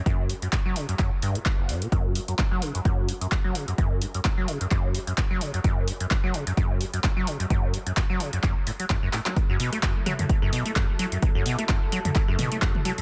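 Raw and trippy, this acid house excerpt rides a squelchy, resonant sawtooth acid bass riff, up front with filter sweeps, overdrive, chorus, cassette-tape grit and dub echo, over a tape-warm electronic kick and an overdriven analog drum machine of handclaps, hi-hat, rim click and toms, until a drum fill at 9.1 seconds sets up a drop at 9.4 seconds on F#m7, where a thick, detuned unison pad with chorus, phaser and sidechain pumping enters at 10.0 seconds, set in light digital ambience with a dense, heavily limited master.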